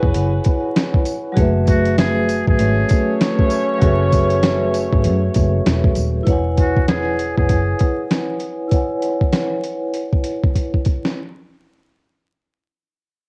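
A home cassette recording with vinyl crackle and small room ambience frames this nostalgic, confident boom-bap hip-hop cut at 98 BPM, swung on the 16ths in E major, moving from E69 to F#m11 and back. A gritty, compressed sampler-style kit with a thumpy kick and fat snare sits up front, joined by a dark, round foam-muted bass with tube saturation, a metallic, ringing vibraphone with slow motor vibrato, tight horn-section stabs treated with analog delay, and a jingly tambourine in the background. From 1.7 s a buzzy, breathy trumpet with a metal mute carries an intimate jazz melody with scooped notes, while a filter sweep runs from 6.3 s and a drum fill lands at 10.6 s.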